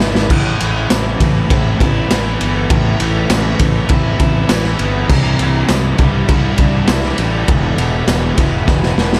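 The raw garage drum kit sits up front in this hazy, dreamy rock excerpt of shoegaze and dream pop, its punchy kick, medium-tuned snare, crash and ride cymbals sounding gritty and saturated with a rolled-off top in a small, pumping room, opening with a quick fill before 0.3 seconds and closing with another at 8.7 seconds. Beneath it, a fingered electric bass growls with overdriven fuzz, holding the low end in A minor at a straight 100 BPM in 4/4. Two picked electric guitars play riffs from the background: a cranked stack guitar with overdrive and reverse reverb, and a thick fuzz guitar thickened by distortion and ensemble chorus. A jingly, bright tambourine rings faintly in a live room until 8.2 seconds. The harmony moves from Amadd9 to Cadd9 and then E, with a small room reverb softening the whole mix into a blurred, dreamlike haze.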